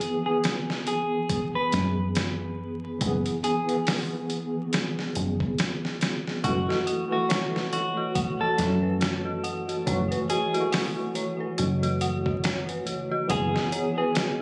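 This trip hop excerpt has a cinematic, smoky mood, its swung sixteenths moving at an unhurried pace in 4/4 as the harmony drifts from E over F# to F#m7 and back. Up front, a dusty sampler-style drum kit thumps with a gritty, compressed kick, fat snare and hi-hat, while a deep dub fingered bass enters at 1.7 seconds with a round, foam-muted, dark tone before falling away at 13.5 seconds. A clean, dark-toned fingered electric guitar carries the melody in a narrow upper-middle register, and a bright tine electric piano with tremolo, heard through its built-in speakers, supplies the accompaniment; both are roughened by vintage 12-bit sampler grit and trailed by tape echo. At 6.4 seconds an eerie, inharmonic FM bell joins with detuned arpeggios, its fast attack and decaying tail shimmering with chorus, tremolo and tape echo. The whole mix sounds as if captured on a phone in a club room, with light reverb, vinyl crackle and compression adding a hazy, lo-fi atmosphere.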